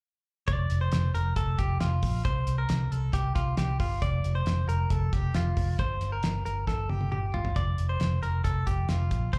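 Heard as a live club gig through the venue's PA with small-room reverb, this nostalgic, breezy slice of jangly indie pop sets a bright, twangy clean electric guitar playing compressed arpeggios through analog delay and slapback echo over a dark, round, foam-muted fingered bass and a cloth-damped, thuddy drum kit with a fat snare, tight kick and rolled-off top, both sitting up front, as the chords move through Fadd9, Csus4 and Gm7 and a drum fill at 6.7 seconds leads into a new section at 7.6 seconds.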